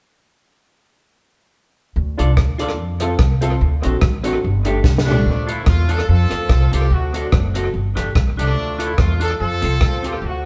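Energetic and mischievous, this ska passage in D minor at 145 BPM with a light swing opens with a woody pizzicato upright bass at 2.0 s, joined by a compact cocktail drum kit with a high-tuned snare, punchy kick and dub echo, a clean hollow-body electric guitar accompaniment, and worn, slightly detuned upright piano stabs that stop at 5.2 s, while a distant, loose horn section with vibrato carries the melody from 5.1 s, the band sounding live in a wet stone room.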